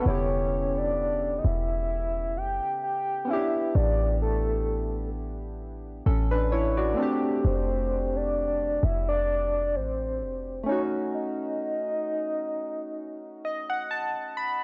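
A dry, gritty cassette-tape sound with transformer saturation and a touch of digital ambience frames this moody, late-night contemporary R&B fragment with a gentle swing, where a deep, boomy 808-style bass sits under soft, round, detuned electric-piano-like synth keys with chorus, while a dark, full octave-layered synth lead with chorus, tremolo and vibrato carries the melody over chords moving from Em6 through A7sus4 and F6 to B9/A, before the bass drops away at 10.7 s, a break opens at 11.1 s, and the keys play a closing fill from 13.0 s.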